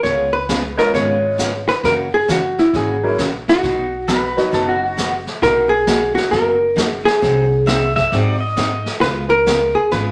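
Swinging eighths at 134 BPM in 4/4 drive this cheerful western swing country cut in B major, where a dark, clean, compressed hollow-body jazz guitar carries the melody up front over a bright, full-bodied jumbo acoustic guitar, a thumpy gut-string upright bass, and a vintage brush kit with a punchy kick and rolled-off top, while a clear, short-sustain upright piano comps from 0.8 to 5.0 seconds and a twangy pedal steel with fingerpicks, slide and volume swells adds a second line from 4.1 seconds, all in a wet studio reverb.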